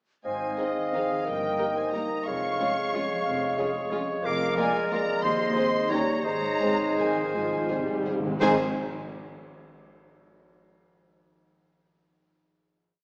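A lilting 3/4 waltz pulse, pulled about with rubato between 156 and 197 BPM, carries this short, elegant and sweeping orchestral ballroom piece in Ab major. The violin section sings the melody with smooth, vibrato-rich bowing, doubled in sixths by a pure, very quiet flute section, while a second violin line adds portamento and after-beat chords beside a dark, woody viola section. Cellos and double basses sit in the background, the cellos placing bass notes on the beats and the basses doubling that line, as a ringing concert harp rocks through broken chords. A clear oboe, a distant clarinet with its counter-melody, a punchy bassoon and a tight, mellow French horn section fill in sustained chords. Timpani struck with hard mallets enter at 5.2 seconds and roll into the louder close, cymbal swells, crashes and bass drum strokes join at 6.3 seconds, and the full band accents the final chord at 8.4 seconds, framed by a wet concert-hall reverb and a small-speaker sound.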